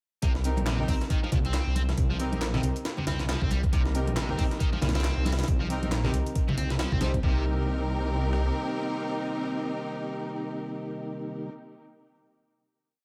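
An energetic, funky breakbeat track at 137 BPM opens at 0.2 s with a gritty, compressed, pitched-up sampler break up front, its thumpy kick, high-tuned snare, rim clicks and hi-hats looped with edits and swung on the sixteenths. A detuned sawtooth bass, thick, beating and menacing, drives a dotted rhythm beside it, while a sludgy, overdriven electric guitar, picked and double-tracked, cycles a 32-step riff through tape echo. Sparse, biting stabs from a lush symphonic string section echo on top, one chord shape moved in parallel over a Cm7 harmony, and in the background sit a layered electronic machine kit of closed hats and claps and a band-limited, vintage conga loop played with hard hands. From 3.7 s a mellow, round tonewheel organ joins with sustained pad chords, lightly overdriven and spun through a fast rotary speaker with chorus vibrato and sidechain pumping. After the drop ends at 7.2 s, the organ and strings carry a closing chord, ringing out to the end of the piece under a light reverb.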